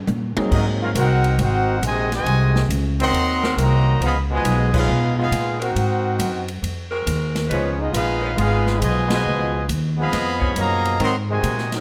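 A clear, up-front trumpet section carries the melody in this swinging, brassy big band jazz excerpt at 137 BPM in Ab major, with a brilliant trombone section playing a second line below it and a mellow, distant saxophone section holding sustained chords. A woody, growly pizzicato upright bass and an airy, polished drum kit with dark cymbals and a punchy kick, which opens with a short drum fill, drive the swing, while a concert grand piano with a deep bass adds a brief touch of accompaniment at 0.4 seconds. The whole band hits accents at 4.7 and 9.0 seconds, and light reverb gives the sound a touch of space.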